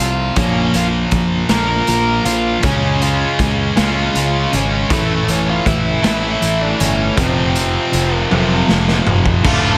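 A slow, straight 6/8 sway drives this brooding, angsty stretch of quiet-loud alternative rock, cut from a longer piece. A bright, picked distorted guitar riff sits in the background alongside a twangy, compressed twelve-string electric playing very quiet clean arpeggios, while a growling fingered bass adds overdriven weight underneath. From 0.4 seconds a second overdriven riff guitar with slapback echo joins, along with a raw garage drum kit whose punchy kick, gritty saturation and rolled-off top give the pumping small room a rough character. Over the chords Bbm, C#, A and F5, a bluesy lead guitar carries the melody with a warm distorted tone, slapback echo and digital delay. A drum fill starts at 8.3 seconds, and at 9.4 seconds a dark, woody string section enters softly in the background with light vibrato, joined by a double-tracked overdriven guitar riff. Moderate scoring-stage reverb gives the whole mix a big arena sound.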